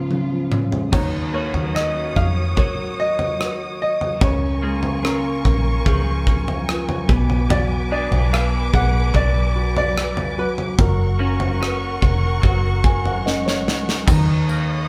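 A band playing live in a stone room gives this short cut from a longer emotional, hopeful pop ballad at 73 BPM a moderate reverb, with a clear grand piano carrying the melody, its action noise audible, over a soft, felt-muted upright piano and a bowed string section that sustains chords with vibrato and portamento. An up-front drum kit with a punchy kick and bright cymbals opens with a fill, and a dark, round, foam-muted fingered bass and a twangy, compressed twelve-string electric guitar playing arpeggios in the background join at 0.9 seconds. The harmony moves from D#m7 through A#m7 and Bm6 to F#, and the muted piano and drums add fills before the return to D#m7 at 14.1 seconds, where a jingly tambourine briefly sounds.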